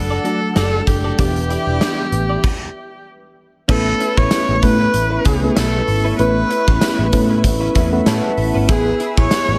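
A gated 80s drum kit sits up front in this nostalgic, glossy 1980s-style pop excerpt, its punchy kick, medium-tuned snare, bright cymbals, hi-hat, tambourine and crash ringing in a stone room that is cut short by the gate. The tempo is 96 BPM in 4/4 with a light sixteenth-note swing, and the harmony moves from D/F# and Em7 into A major at 3.7 seconds, after a stop from 2.4 seconds. A clear, focused viola carries the melody with vibrato, over a mellow FM electric piano whose soft, round tone has a fast attack, a noise layer and chorus, and which plays a fill from 7.4 to 8.7 seconds. A vintage muted picked electric bass gives a dark, foam-muted low end, while a clean, compressed electric guitar recorded direct plays a picked riff with analog chorus in the background. Behind them, a swirling, detuned sawtooth pad holds sustained chords, its slow attack and long release colored by phaser and chorus, all within a light small-room reverb.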